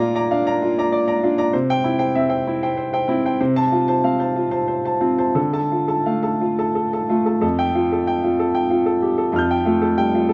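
Neoclassical minimalist piano in F major, an intimate and peaceful fragment cut from a longer piece, where a solo baby grand with a warm, boxy, up-front tone plays in a rubato 3/4 at around 85-99 BPM, spanning F2 to G6 over a Bb, C, F/C and Dm progression before settling on Fadd9 at 7.4 seconds, all within a moderate stone room reverb and a dark production.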